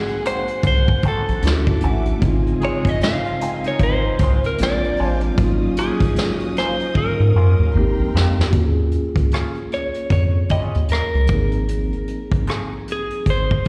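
A deep, round analog bass sits up front in this relaxed, soulful neo-soul R&B excerpt at 76 BPM with a swung 16th feel, joined by a punchy brushed drum kit that plays a fill from 7.0 to 8.5 seconds, a clean, picked electric guitar melody bathed in spring reverb and tape echo, a mellow tine electric piano, a fingered semi-hollow guitar line colored by wah, lush, distant bowed strings that stop at 8.5 seconds, and brief, clear horn stabs arriving at 2.6 seconds, the mix heard as a live gig through a venue's PA with recital hall reverb.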